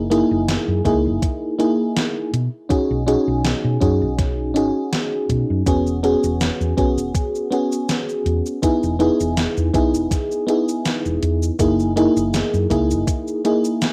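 Dreamy and woozy, this short vaporwave fragment drifts along in 4/4 with a gentle sixteenth-note swing. A mellow FM electric piano sits up front carrying the chords, its soft, round, full-bodied tone thickened by analog chorus, cassette tape coloring and tape echo, with a faint noise layer under each fast-attacking, decaying note. Beneath it, a fingered hollow-body short-scale electric bass adds a dark, amped low end until 13.0 seconds. A gated 80s digital drum machine supplies cabasa, hi-hat and a snare soaked in gated reverb, while an electronic kick enters at 0.9 seconds with a thumpy punch; both drum parts are overdriven and sound re-recorded in a large room. The harmony moves from F#13 through B69, E69 and Emaj7 before returning to F#13, set in light reverb within a rough home demo mix.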